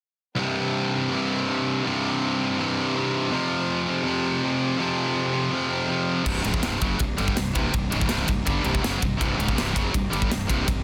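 Dark and aggressive, this heavy metal fragment drives along at 163 BPM in a straight 4/4, rooted in C phrygian and cut from a longer piece. From 0.4 seconds, an overdriven, bright electric guitar plays a picked riff up front, joined by a high-gain distorted guitar sitting in the background, while a very quiet chamber string section holds bowed, earthy sustained chords with light vibrato from a distance. The harmony moves from C minor to F minor before returning to C minor at 6.3 seconds, where the second section begins. At that point a fuzz-driven fingered bass enters with a growly, overdriven tone, alongside a tight metal drum kit placed up front, its bright crash and ride cymbals sparkling over a tight kick and medium-tuned snare with an airy, polished big-room sound. The mix carries light reverb and small room ambience, finished with a dense, heavily limited modern master.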